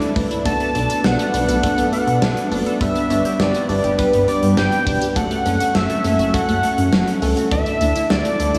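An upbeat, bright synth-pop excerpt opens with a bold, octave-doubled sawtooth lead up front, a glassy FM electric piano with a bell-like attack, a lush, detuned unison pad in the background, and a huge arena drum kit with a punchy kick and fat snare. At 0.2 seconds a chorused synth bass with a retro pulse-wave tone joins, along with a squelchy, resonant blip pluck playing arpeggios through phaser and digital delay, as the chords move from Bm7 through G and F#m to Dsus2. Chorus and slapback echo color the lead and piano, and a long concert-hall reverb gives the whole a big arena sound.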